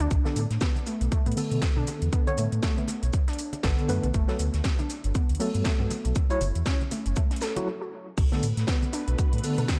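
A warbling, lo-fi pluck traces arpeggios through chorus, tape wear and dub echo over a deep, up-front sub bass and a house kit with cracking snare and metallic hats, opening this hypnotic, smooth deep house excerpt with a swung groove. A punchy, layered electronic kick, a very quiet dry reggae kit, bright close congas in the background and a worn, slightly out-of-tune tine electric piano with tremolo stabs fill out the echo-heavy mix, with bass, pluck, piano, congas and strings pumping to the sidechain. After a break at 7.7 s, silky string-machine chords with ensemble chorus enter at 8.5 s as the drop returns to Bm7.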